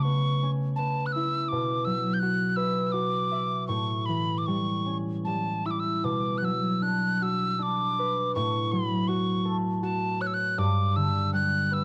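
A mellow tin whistle carries the melody of this Celtic slow air, its metal tone airy and touched with chiff on tongued notes, with gentle vibrato colouring the line. Alongside it, a fingerpicked concert harp provides the accompaniment, its acoustic strings ringing beneath the tune, and both parts sit up front and play together throughout the 11.8 seconds. The mood is wistful and tender, moving in a rubato 3/4 at roughly 76-84 BPM so the pulse breathes freely. The harmony drifts from Aadd9/C# through A7 and Bm before settling on G5 at 10.6 seconds. The sound is dry and intimate, with little reverb, like a close 1970s-style studio recording, and this passage is cut from a longer piece.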